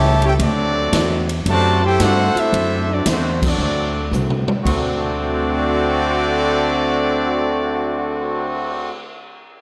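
A swung four-beat pulse drives this joyful big band swing fragment, cut from a longer piece, with the drum kit joining at 0.2 seconds from a distant, roomy spot in the hall and adding crash, ride and hi-hat, cymbal swells, toms, a medium-tuned snare and a punchy kick. A woody, thumpy pizzicato upright bass anchors the low end, while a dark, clean, hollow-body archtop guitar supplies very quiet picked accompaniment. Up front, a brilliant trumpet section carries the melody with a soft attack and light vibrato. A tight trombone section plays a second line beneath it, and a very quiet muted trombone section holds nasal straight-mute chords. The full band hits an accent at 3.3 seconds, and a drum fill around 4.1 seconds leads into the second phrase, all set in a moderate concert hall reverb.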